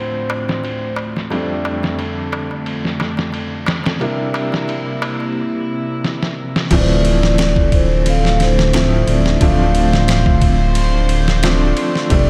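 Trip hop with a cinematic, brooding mood, this dreamy, reverb-soaked fragment pairs a clear, woody upright piano with tremolo and tape echo, dark bowed strings whose 12-bit sampler grit gets a filter sweep, and a mellow soft-mallet vibraphone melody, all over a compressed, gritty sampler-style drum kit with a thumpy kick and fat snare, a crisp metal-shell darbuka tucked in the background until 5.3 seconds, and a deep, rumbling detuned saw bass that arrives up front at 6.7 seconds after a drum fill.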